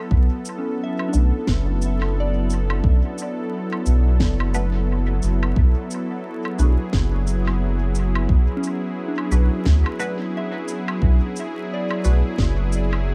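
A round, soft sub bass sits up front in this meditative, deep ambient dub at 88 BPM in B dorian, holding on a Bm7 chord with a swung 16th-note feel and vinyl crackle throughout. A smooth, detuned sawtooth pad sustains chords with chorus while a pure FM bell plays gentle arpeggios through chorus and tape echo, and a muted, dark chord stab with a filter pluck, phaser and dub echo drifts in the background from 1.1 seconds. An overdriven, layered kick thumps in a small room, joined by electronic cabasa, woodblock and a woody snare that trail off in dub echo, all in a cut from a longer piece.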